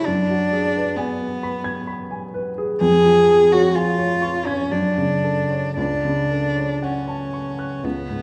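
Elegiac and melancholic, this brief romantic classical passage in F# minor moves in a rubato 3/4 at 56-67 BPM: an intimate, close cello carries the melody up front with a soft-attacked, airy sul tasto tone and light vibrato, while a warm baby grand piano supplies natural-sounding accompaniment with audible action noise, the pair set in a wet recital-hall reverb.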